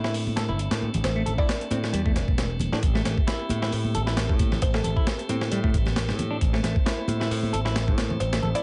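A gritty, thumpy sampler-style breakbeat kit and a bright picked bass open this energetic, funky breaks excerpt up front, with a clean fingered semi-hollow guitar riff dressed in spring reverb and delay, and a piping tonewheel organ holding sustained chords in the background with key click and sidechain pumping. Very quiet, high-tuned congas come in at 0.3 seconds, and a buzzing, woody kalimba with a small-speaker tone and delay drops short melodic phrases from 1.0 seconds. The drop at 2.8 seconds shifts the harmony from minor to minor seventh, all under a dry, dusty sound with vinyl crackle and a dulled top end.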